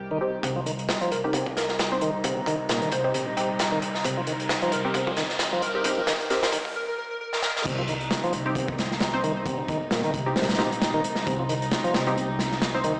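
Heard through a small speaker on a big system in a bare stone room, with a lush hall reverb around the parts, this energetic, funky breakbeat excerpt in 4/4 swings its sixteenths. A crunchy, saturated drum kit sits up front with a tight kick, a medium-tuned snare, dark hi-hats and crash, and a rolled-off top, while a woody, growly pizzicato upright bass holds the low end under a thick, overdriven tonewheel organ riff full of key click, chorus vibrato, 12-bit sampler grit and digital delay. Soft, floating sul tasto strings pump under sidechain on sustained chords, and a muted, mellow dub chord stab with chorus and delay stays in the background. A punchy, bright unison lead with an old-record coloring enters at 1.1 seconds with a catchy melody, during the build-up that starts at 0.4 seconds, as filter sweeps move across the strings and the lead and a background electronic riser climbs. A short break at 6.8 seconds ends in a drum fill before the drop lands at 7.7 seconds, where the groove carries on to the end of the cut.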